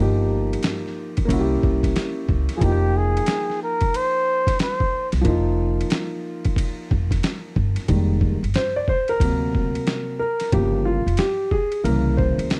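A breathy flugelhorn carries the melody from 2.6 to 5.1 seconds, its whispered, soft-attacked tone and gentle vibrato sitting up front in this smoky, cool jazz-hop excerpt in F minor at 91 BPM, tuned slightly flat to A4 = 437 Hz. Beneath it, a dark concert grand piano lays down mellow, vintage-sounding chords with deep bass and audible action noise. From 7.9 seconds the piano takes a solo over moody extended harmonies. A pizzicato upright bass gives a woody, growly low end. A pitched-down, overdriven boom bap sampler-style kit enters just after the opening, its thumpy kick, medium-tuned snare, hi-hat and ride cymbal swinging the sixteenths with a compressed, gritty punch. The whole piece has the dry, close feel of a small-room 1970s studio recording, and it is cut from a longer piece.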